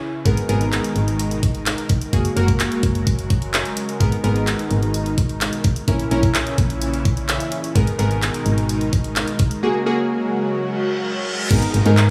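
Dance-pop at 128 BPM in G# minor, driving and energetic and cut from a longer piece, with a smooth, detuned supersaw holding sustained chords from the start, glassy chorused digital keys and a punchy, round FM bass all carrying sidechain pumping, while an up-front pop drum kit with a knocking kick, handclaps, warm hi-hats and crash propels the groove, the keys add a brief fill at 7.1 seconds, and a reverse cymbal and downlifter arrive at 10.7 seconds, set in a light small-room ambience.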